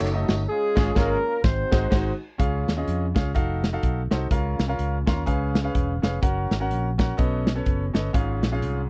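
A mellow, jazz-style horn section with vibrato and octave doubling opens this uplifting, soulful uptempo gospel excerpt in Db major at 125 BPM, sharing a band accent with the clear, intimate baby grand piano, round, amped fingered electric bass and punchy acoustic drum kit before the horns drop out at 2.4 seconds. The piano, with audible action noise and long sustain, carries the swung 4/4 groove through a chord run from F7b9 and Bbm to Gb and Cb9, adding a fill between 4.8 and 6.2 seconds, while the polished drums, with dark cymbals, a medium-tuned snare and an airy room sound, sit up front. The dry, close recording has a 1970s studio character.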